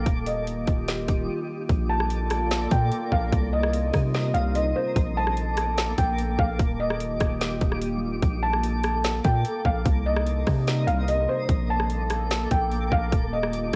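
A felt-muted upright piano sings a soft, intimate melody with audible action noise and tape echo over a moody, detuned analog pad with chorus, phaser and sidechain pumping, a deep sine 808-style bass and a twinkling granular shimmer, before a trap kit with a hard-clipped kick, woody snare and metallic hats enters at 0.1 seconds in this dreamy, blissful atmospheric cloud-rap excerpt at 147 BPM in half-time in Bb major, with a brief break from 1.3 to 1.7 seconds and the hazy character of a home cassette recording.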